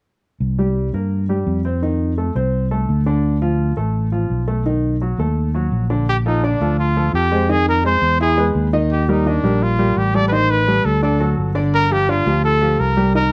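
A punchy, amped fingered electric bass opens this sunny, sophisticated jazz excerpt at 0.4 s, joined at 0.6 s by an intimate, clear grand piano whose action noise is audible, before a warm trumpet solo with vibrato, scooped notes, a smooth top and plate reverb takes the melody at 6.1 s, all moving at a straight, brisk 170 BPM in Bb major in a moderate club reverb.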